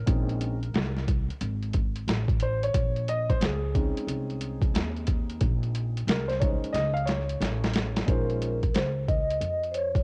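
Jazz-hop with a nocturnal, cool mood at 90 BPM in Bb minor, built on a Bbm11 chord and a swung boom bap kit that is gritty and overdriven, with a thumpy kick, alongside a woody pizzicato upright bass warmed by tube saturation. A dark, intimate grand piano with audible action noise takes a solo from the start until 8.1 seconds, as a drum fill arrives at 6.7 seconds. Then a soft-mallet vibraphone enters with a metallic, ringing tone and motor vibrato, all wrapped in the character of a home cassette recording with light reverb in this short cut from a longer piece.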